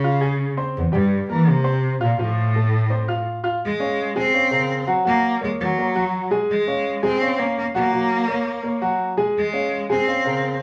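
This Latin piece in straight 4/4 feels driving and danceable, and it is cut from a longer work. A single bowed cello carries the melody up front, its tone rich and focused and played with vibrato. A polished baby grand piano sits alongside it, also up front, supplying clear, present accompaniment. Both parts play together from the opening to about 10.6 seconds, moving from a short first section into a longer second one at 3.6 seconds. The harmony opens on Dbmaj7, passes through C5 and F, then settles around Bbm7 and colorful Gb chords such as Gbadd9 and Gbmaj9#11. Moderate studio reverb and small room ambience give the performance an intimate sense of space.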